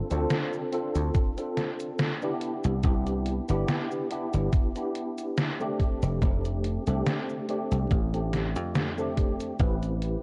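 A thumpy electronic kick drum sits up front in this hazy, nostalgic vaporwave excerpt, entering at 1.1 seconds and dropping out at 9.8 seconds. It moves at a slow 71 BPM in 4/4 with a slight swing on the sixteenths, tuned a touch sharp with A at 441 Hz. A clean tine electric piano played through a combo amp carries the accompaniment, bathed in ensemble chorus and tape echo as it moves from a rootless G9sus4 through Cmaj7 and F69 to Am9. Underneath, a dry, punchy thumbed slap bass with a foam-muted, direct tone holds the low end. A detuned 8-bit drum machine adds cabasa, hi-hat and a medium-tuned snare, its sampler-style hits re-recorded in a small room. The whole excerpt has a dark, cassette-tape character with light reverb.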